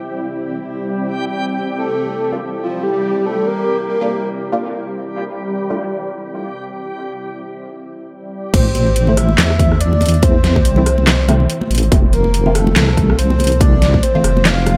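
A half-time feel with swung sixteenths drives this heavy, cavernous deep dubstep passage, cut from a longer piece. It opens with a blurred, granular cloud pad holding sustained chords and a reversed, dreamy swelling texture, both steeped in their own reverb. A breathy, flute-like synth lead with vibrato, chorus and dub echo floats through briefly. A muted, dark chord stab with a moving notch sits in the background, colored by phaser, ensemble chorus and dub echo. The drop lands at 8.5 seconds on an A minor chord, bringing a saturated, sawtooth-edged wobble bass up front with chorus, a punchy overdriven electronic kick, and an overdriven dubstep kit of deep snare, metallic hats, handclaps, rim clicks and crash cymbal. Bright, high-tuned congas played with hard hands sit in the background through dub echo, and the lead returns with the drop. The harmony shifts to F at 11.9 seconds, and the whole echo-heavy mix carries a light reverb.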